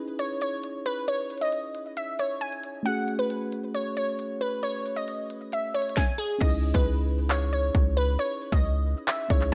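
A half-time trap beat at 135 BPM in 4/4 comes in at 0.2 seconds, its electronic kit sitting up front with a hard-clipped kick, a sharp snare, handclaps, crisp hi-hats and a crash cymbal. This is a short cut from a longer hip hop piece in C# minor, melancholic and menacing in mood, moving from C#madd9 to F#madd9 and back. A glassy, crystalline wavetable pluck carries the melody from the start, a full-bodied digital tone with a fast attack, a noise layer and a filter sweep, thickened by chorus and tape echo. Beneath it a mellow, clean tine electric piano plays a direct accompaniment in the middle register. At 6.4 seconds the hi-hats drop out and a deep, boomy 808-style bass arrives on a low C#, a decaying sine with a noise edge that sits up front alongside the drums. Light reverb wraps the mix.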